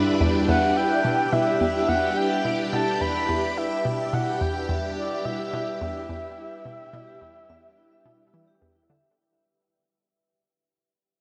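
A swirling, bright string machine holds sustained E minor chords over a hollow, bouncy square-wave pluck riff in the low register, with a bubbling stepped-filter texture in the background, before a metallic, ringing vibraphone adds arpeggios at 0.1 seconds and a breathy, flute-like synth lead enters with a melody at 0.5 seconds, all of it bathed in a huge ambient reverb as this expansive, hypnotic slice of sequencer-driven space music at 107 BPM fades out across its 9.2 seconds.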